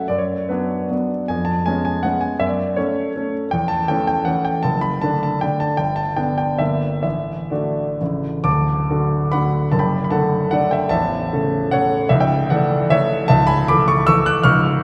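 Rustic and proud, this romantic classical dance in 3/4 moves with rubato between 119 and 174 BPM, its dotted rhythms carried by a solo grand piano that sounds clear, polished and up front, with audible action noise, turning from F# minor to D major at 3.5 s and ringing into a wet concert-hall reverb.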